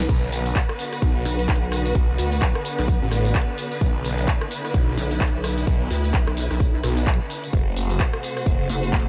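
Lightly reverberant and punchy, this swaggering, bouncy bass house cut at 129 BPM swings its 16ths over Bm shifting to F#dim at 7.5 seconds, as an up-front electronic kick drives a house kit of crash, handclaps, bright hats, rim click, punchy snare and tambourine beneath a swirling, phased detuned saw bass and a heavy, chorused pluck wobble bass, both overdriven and pumping, while a rich, bowed studio string section holds vibrato-laden chords that pump against the kick.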